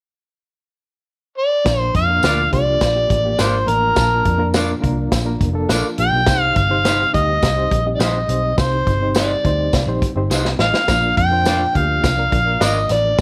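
Warm and danceable, this uptempo 1960s-style soul excerpt moves at 104 BPM in Bb major, led by a gritty, overdriven harmonica that sits up front from 1.4 s, playing a jazz-style solo with tongue slaps, scooped notes and light vibrato. A reedy electric piano with fast tremolo enters in the background at 1.6 s, and from 1.7 s the band joins over Bb and Cm chords: a natural drum kit with a punchy kick and medium-tuned snare, a dark, round, foam-muted picked bass, a very quiet, mellow tonewheel organ on slow rotary speaker, and a distant, jingly tambourine, with twangy, slightly broken-up lo-fi guitar stabs following from 2.2 s. A drum fill at 10.3 s leads back to Bb, and the whole mix carries light reverb and studio ambience.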